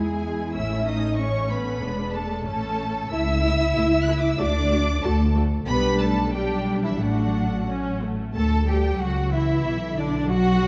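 In a rubato 2/4 at 93 BPM, this spirited, graceful classical-period movement for string orchestra, cut from a longer piece and settling into D major from 3.1 s, sets a lush, vibrato-rich violin melody spanning D5 to F#6 over a richer, more distant second violin line, smooth bowed violas and cellos, and a close, up-front double bass section, all bathed in a moderate scoring-stage reverb with a dark, warm production.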